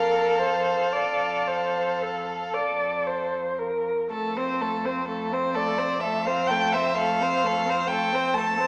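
Classical chamber music, a slow romantic movement for string quartet in 12/8 with rubato, tender and serene in mood and cut from a longer piece. Up front, a rich first violin sings the smooth melody with vibrato, a clear second violin plays an even second line, and a warm viola accompanies expressively with soft attacks and portamento, while a distant cello plays the bass. The quartet sounds as if heard through a small speaker, set in a reverberant recital hall.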